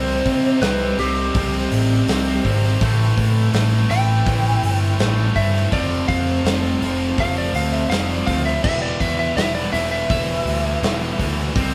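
A straight 4/4 pulse at 82 BPM drives this brooding, cathartic fragment of quiet-loud alternative rock in E phrygian, with the big rock drum kit arriving at 0.3 s on kick, snare, hi-hat and crash; its acoustic sound is mid-forward, with a medium-tuned snare, a tight kick and a rolled-off top. Up front, a growly, punchy overdriven electric bass, picked and amped, holds down the low end from E1 to C3. Three guitars carry the riff: a raw, bright garage guitar with overdrive sits most prominent, while a scooped high-gain guitar and a tight, double-tracked distorted guitar sit in the background. Over them, a slightly broken-up, compressed lead guitar with a warm tone plays a solo melody between G4 and G5 throughout. The harmony moves from Cm to Am, F and Em, and the band plays live together in one small room with a wet reverb.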